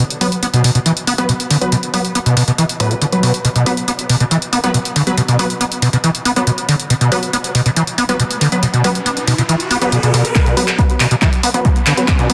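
A dense, heavily limited modern master with a moderate, lush hall reverb frames this intense, relentless slice of driving peak-time techno, cut from a longer piece. Up front, a screaming distorted acid line carries the riff, its squelchy, resonant sawtooth tone thickened by lush chorus, pumping against the sidechain and trailing dub echoes. A punchy, tape-warm analog drum machine supplies handclaps and hi-hats, the hats also pumping, while a thick, detuned rave stab of wave-folded sawtooth and triangle enters at 0.2 seconds with a bright filter pluck, chorus, its own reverb and dub echo, a filter sweep reshaping it. A riser enters in the background at 7.9 seconds. At 10.4 seconds the build-up begins as a drum fill arrives and an up-front electronic kick drum lands, driving the final stretch.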